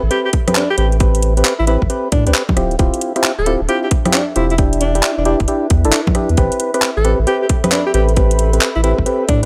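Bouncy and moody, this two-step UK garage excerpt in A minor at 134 BPM swings over a tight, up-front electronic kick and a tape-warm garage kit of congas, handclaps, rim clicks and metallic hi-hats, with a thick, saturated sub bass underneath, hollow, nasal organ stabs through chorus and analog delay, a dark, warbling lo-fi pad pumping in the background, and a clear, jazz-style alto saxophone solo with vibrato and delay, while a very quiet, airy, breathy pad joins at 6.4 seconds as the Am9, Dm11 and Em7 chords cycle back to Am9, all captured in a dry, gritty hardware recording.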